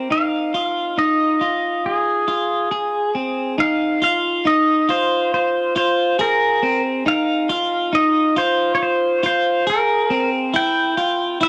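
In a straight 4/4, this floating, ethereal dream pop fragment pairs a clean, twangy electric guitar picking compressed arpeggios through subtle chorus, a low-pass filter and analog delay with an up-front pedal steel guitar carrying the fingerpicked slide melody in volume swells through its own analog delay, both bright and forward in a dry, gritty hardware sound with light reverb and a dulled top end, as the harmony moves to a rootless C at 10.5 seconds.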